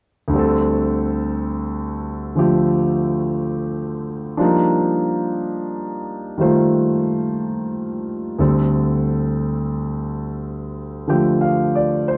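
Jazz with a smoky, melancholic mood, this short cut from a longer piece moves at a slow 60 BPM in 4/4 with a swung eighth-note feel. A concert grand piano carries the accompaniment from 0.3 to 12.2 seconds, ranging from D2 up to G5. Its tone is clear and natural, with a deep bass register, and it sits up front in the mix. The harmony moves from D7sus4 to Cm11 and back to D7sus4. The piano sits in a studio with a short, wet ambience that suggests a band playing live together in one room.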